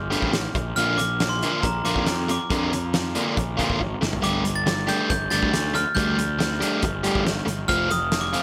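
A light reverb frames this restless, bittersweet indie rock cut at 139 BPM in G minor, where a bright, bell-like glockenspiel struck with brass mallets rings out its melody high over an up-front, double-tracked fuzz guitar riff, a warm picked electric bass thick with overdriven fuzz, and a loose acoustic drum kit with a fat snare and punchy kick in a pumping studio room, its drum fill arriving at 3.8 seconds as the chords move from Gsus2 to Bb, back to Gsus2, and onto F.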